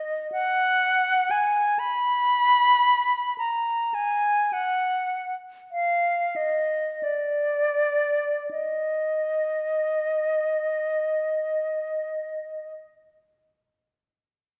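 A close-miked concert flute sits up front, its airy, bright tone carrying vibrato and soft attacks as it plays alone from the start until 12.7 seconds. This is a grave, flowing classical fantasia in a baroque style, set in Eb minor and 4/4, moving in a free rubato between 39 and 63 BPM. The expressive line stays in the flute's upper middle range, reaching from D5 to Cb6. Over the first 8.5 seconds the tempo slows down before a new section begins and runs to the close of this brief cut from a longer piece. A wet recital hall reverb surrounds the flute, and the production is dark and warm.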